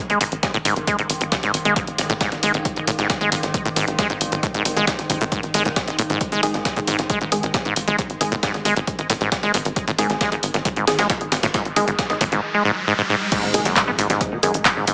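A driving, straight 4/4 pulse at 135 BPM sets up this dark, relentless peak-time techno cut, built on a punchy analog kick and drum machine with crash, handclaps, hi-hat and shaker pumping against the sidechain, plus a gritty, pitched-up breakbeat kit of filtered hats and snare in the background. An up-front squelchy, resonant acid saw riff with digital delay rides over a tight, nasal sequencer bass, while a very quiet metallic, eerie FM drone hovers in the mix and crisp, dark wavetable chord stabs enter at 6.4 s. A background riser builds from 11.3 s into a drop and impact at 13.3 s, all set in a lush hall reverb with a small-speaker character.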